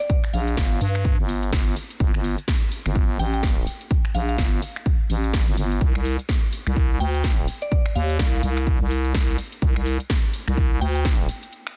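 Gritty and bouncy, this bass house excerpt rides a swung sixteenth-note groove, with a punchy, tape-warm electronic kick sitting up front beside a thick, growling FM bass that is overdriven and pumps against the sidechain. A layered dance kit of cabasa, finger snaps, hi-hat and a punchy snare sits in a small room reverb, while a soft, mellow synth bell carries the high melody through chorus and tape echo over a Gsus2 to Csus2 change. The dense, heavily limited master has a digital sheen, and a break arrives at 11.5 seconds as the short cut ends.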